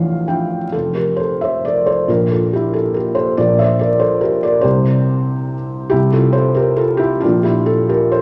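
A rubato 6/8 sway at roughly 43-48 BPM in dotted quarters carries this calm, lyrical classical excerpt in F major, where a solo felt-muted upright piano, dark, intimate and up front with audible action noise, opens with a brief fill before settling at 0.7 seconds into a gentle passage moving from F through Bb5, Gm/Bb, C5 and Am/C to Bb, all bathed in a concert hall reverb and vinyl crackle.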